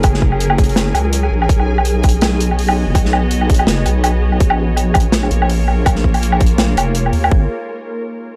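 A dry, gritty recording with transformer saturation and a cassette-tape grain, set in studio reverb, carries this dark, spacious cut of half-time drum and bass, caught mid-drop from the start until 7.3 seconds as the chords move from F# through B and A#m7 to G#m. A deep, soft wobble bass with chorus and tube saturation sits up front beside a tight, layered electronic kick and an acoustic studio kit of hi-hat, medium-tuned snare and woodblock. Behind them, a tense, string-like drone with vibrato and ring modulation pumps with sidechain compression in its own reverb, while a flickering, detuned granular texture hovers in the background.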